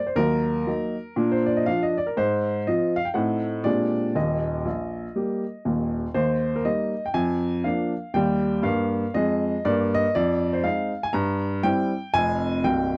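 A woody, up-front upright piano with audible action noise and long sustain plays solo stride jazz in a swinging 4/4, exuberant from its opening minor-tinged phrase to its close at 13.0 seconds, captured in a dry, intimate 1970s-style studio sound touched with light reverb.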